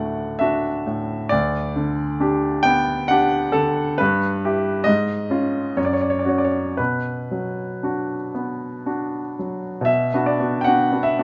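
A clear, polished baby grand piano opens alone on a D chord, carrying a tender, serene romantic nocturne in 3/4 at 56-78 BPM with free rubato, and its range runs from D2 to G5. The harmony moves through G/D before settling into B minor from 4.0 s, passing Em/G, C#/G# and F#5 to reach Bm at 6.8 s. The piano sits present and up front in a moderate studio reverb, and the passage is cut from a longer piece.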